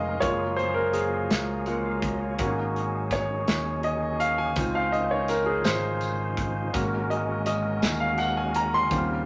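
A clear, intimate grand piano leads this short slow gospel passage in 6/8, up front with its action noise audible as it carries the harmony from Gbmaj9 through Ab7sus4 and Dbmaj9 to Ab9sus4. Behind it, a reedy tonewheel organ holds sustained chords in the background, its key click and slow rotary speaker with chorus vibrato adding shimmer, while a glass harmonica floats pure, ethereal tones above with a smooth, slow attack. A fingered electric bass gives a punchy, amped low end, and an acoustic drum kit with a punchy kick and medium-tuned snare sits up front in a pumping small room, entering at 0.2 seconds. A jingly tambourine joins quietly in the background at 4.6 seconds. The mood is jubilant and soulful, wrapped in a wet studio reverb, and the clip is cut from a longer piece.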